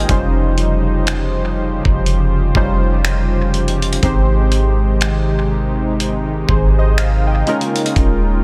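Detuned sawtooth keys with a mellow filter sweep, chorus and analog delay sit up front over a smooth, tremolo-shaded analog pad and a deep, round 808-style bass in this moody, sensual contemporary R&B excerpt, while a dusty, gritty sampler-style kit of finger snaps, hi-hat and thumpy kick enters at 0.1 seconds with a swung sixteenth feel, all moving from Dbmaj9#11/F to Abmaj7 and on to Eb9sus4 at 7.5 seconds in an echo-heavy mix with light reverb.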